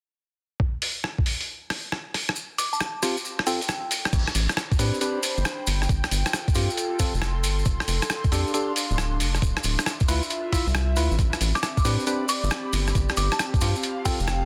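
A rubbery, bouncy square-wave bass anchors this moody, late-night two-step garage excerpt at 136 BPM, arriving at 4.1 seconds with sidechain pumping under a swung 16th-note groove. Gritty, pitched-down sampler drums sit up front in a small room: a thumpy electronic kick and a tape-warm boom bap kit with crash, hi-hat and rim click, its snare softly clipped. The kick drops out briefly before returning alongside the bass. Grainy maracas sound distant, while a hollow, percussive organ stab with chorus and tape echo carries a filter sweep through the second half. A crystalline FM bell flickers briefly early on and returns near the end, and a breathy, warbling pad drifts in at 5.0 seconds, pumping alongside the stabs as the chords move from G9sus4 through Am11, F6 and Dm9 on a dense, heavily limited master.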